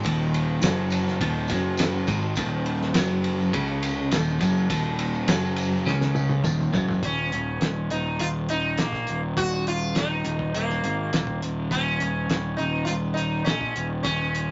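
A twelve-string electric guitar carries the riff in this dark, mysterious psychedelic rock excerpt, its bright, twangy picked line pulsing under a harmonic tremolo over a low Eb minor chord for the first 7.0 seconds. Beneath it, a fuzz-soaked picked bass sits round and punchy, while a cloth-damped drum kit thuds along with a fat snare, tight kick and muffled, dark cymbals that give the groove a gritty, lo-fi, small-room character. A jingly tambourine sits in the background through this opening stretch, and a drum fill at 5.9 seconds carries the music into its second half. At 7.0 seconds the guitar and tambourine drop out and the harmony falls away, leaving the bass and drums under a sitar melody whose buzzing, shimmering tone rings with sympathetic strings. The whole mix is close and rolled-off at the top, with only a light touch of reverb.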